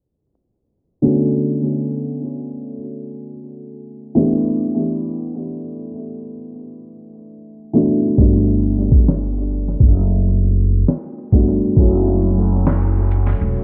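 A felt-muted upright piano opens this nostalgic, reflective lo-fi hip hop excerpt alone at 1.0 seconds, its dark, mellow tone carrying audible action noise and tape echo as it moves through Bm7, A7sus4, Gmaj7 and F#m7 in B minor at a slow, swung 67 BPM. At 8.2 seconds a woody pizzicato upright bass with steel strings and a compressed, pitched-down sampler-style drum kit enter together, the kit's muffled hi-hat, thumpy kick and fat snare also touched with tape echo. The echo-heavy mix sits in a small room with light reverb, vinyl crackle, a low-pass filter and a filter sweep running through the whole passage.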